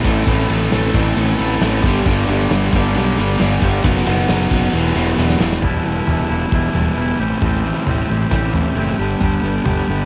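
A thick, up-front fuzz guitar drives this dark, brooding excerpt of quiet-loud alternative rock in E minor at 134 BPM, riffing alongside a crunchy, bright overdriven guitar, a fuzzy fingered bass and a loose indie drum kit with a tight kick and dark cymbals in a small room. After a drum fill, the crunchy guitar stops at 5.6 seconds and the song drops into half time, where a clean, twangy guitar enters with compressed arpeggios bathed in spring reverb over Em7, Am7 and G. The whole take carries the character of a home cassette recording with light reverb.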